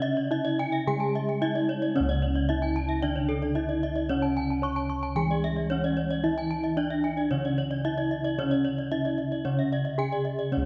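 A straight 4/4 pulse at 112 BPM drives this shimmering, hypnotic passage of Balinese gamelan in C# pelog, cut from a longer piece and shifting into a new section at 2.0 s. A dark, smooth bronze metallophone struck with wooden mallets carries the melody, while bossed gongs sit up front with a round, beating bass. Beneath the tune, a second wooden-mallet metallophone plays accompaniment in the background. Two horn-mallet metallophones spin arpeggios above: one bright and high, the other dark and smooth, entering at 0.4 s. Every metallophone is tuned in pairs, so their ringing bronze tones pulse with shimmering beats. A moderate concert-hall reverb lends the ensemble a spacious bloom.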